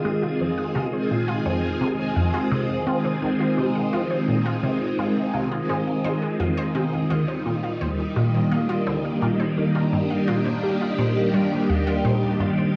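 A swirling, vintage string machine sits up front, its sustained chords warbling through ensemble chorus and phaser over Fm7 before shifting to Ebmaj7 at 7.1 seconds, in this expansive, hypnotic slice of ambient, sequencer-driven space music at 85 BPM in F dorian. Beneath it a juicy, squelchy blip pluck drives a resonant low riff with phaser and delay, while a lush unison pluck spins arpeggios in the background and an airy, breathy wind-like texture drifts behind through its own reverb. The home cassette recording places everything in a small, wet room.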